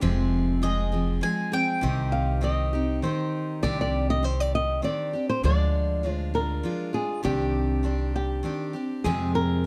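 This acoustic folk piece for a small band is a haunting, wistful fragment cut from a longer work, moving at 100 BPM in 3/4 with a straight feel in C minor. A full-bodied, picked jumbo steel-string guitar and a woody, growly pizzicato upright bass sit up front throughout, the bass adding a dark floor beneath the harmony. A bright bowl-back mandolin carries the melody on its doubled strings from 0.6 to 3.0 seconds. A fingerpicked flamenco guitar, also close and up front, joins with a second line and then takes a solo from 3.6 seconds to the end. The chords move from Fm to Cm, then through Cmadd9 and Ddim before returning to Fm. Close, detailed microphones and a light reverb keep each instrument clear and intimate.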